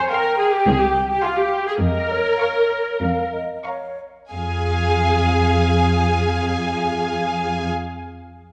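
In a rubato 4/4 that moves between 87 and 108 BPM and slows through the first 4.3 seconds, this quick, stormy classical-period orchestral fragment in F minor shifts from F minor to B-flat minor over F and back. A lush, smooth violin section carries the high melody over an expressive second violin line, while an up-front viola section gives vibrato-rich accompaniment and a clear cello section enters on the bass at 0.7 seconds. A mellow, hollow concert flute adds a soft-edged second line until 4.0 seconds, all set in a moderate scoring-stage reverb that heightens the restless mood.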